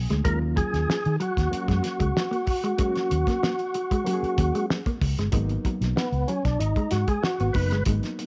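A straight 94 BPM funk groove in 4/4 and G# dorian drives this sly, cassette-taped home recording, where a cloth-damped, thuddy drum kit with a fat snare and gritty, rolled-off top sits up front beside a round, foam-muted fingered bass, a dark, clean electric guitar riff, reedy electric piano stabs with light overdrive and fast tremolo, and a full, percussive tonewheel organ through a fast rotary speaker that carries the melody over D#m7 before taking a solo on G#m7 from 5.3 seconds.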